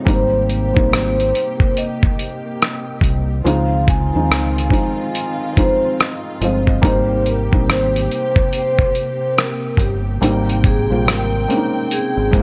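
Lo-fi hip hop at 71 BPM in Ab major, cosy and nostalgic, with a swung sixteenth-note feel, cut from a longer piece and moving from Abmaj9 through Dbmaj9 before settling on Abmaj7. A vibraphone with soft mallets carries the airy, ringing melody with slow motor vibrato over a felt-muted upright piano whose thick felt, cassette-tape grain and audible action noise make it sound intimate, while a dark, woody string section holds lush bowed chords lower in the mix. Up front, a round, deep dub fingered electric bass and a gritty, compressed sampler-style drum kit with thumpy kick, hi-hat and rim click enter at 0.1 s, and the whole mix sits in a small room with a cassette-tape haze.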